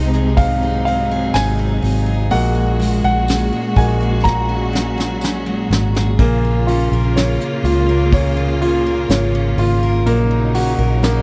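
Melancholic and emotional, this slow pop ballad in Bb minor moves at 62 BPM in a straight 4/4. It is cut from a longer piece. A clear, polished concert grand piano carries the accompaniment, with deep bass and short sustain, and takes a solo turn from 0.0 to 6.2 seconds. Underneath, a bright, lush studio string section holds sustained bowed chords with intense vibrato, while a full-bodied jumbo steel-string acoustic guitar picks arpeggios in the background, touched by tape echo and a little finger squeak. A vintage muted electric bass sits up front with a dark, round, punchy tone, and a soft brush drum kit adds a punchy kick and medium-tuned snare, with a drum fill from 4.3 to 6.2 seconds. A jingly, distant tambourine enters very quietly at 1.3 seconds, and the whole recording has the dry, close sound of a 1970s studio with little reverb.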